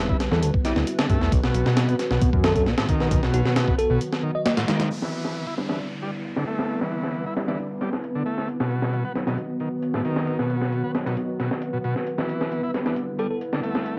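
A straight 134 BPM breakbeat groove in E minor drives this swaggering, gritty breaks excerpt, its compressed sampler-style kit pairing a thumpy kick with a high-tuned snare up front, while a buzzy, overdriven combo organ with heavy vibrato riffs through 12-bit grit and tape echo over a warbling, nostalgic pad moving between Em7 and B. A fat, detuned sawtooth bass holds the low end only until 4.0 s, and a sparkling, bell-like FM electric piano carries the melody through a phaser and telephone filter before a short break. From 4.9 s an electronic downlifter falls away, and from 5.6 s a bold, punchy orchestra-hit-like stab sweeps through a filter in the background, all steeped in lo-fi cassette tape coloring and a moderate booth ambience.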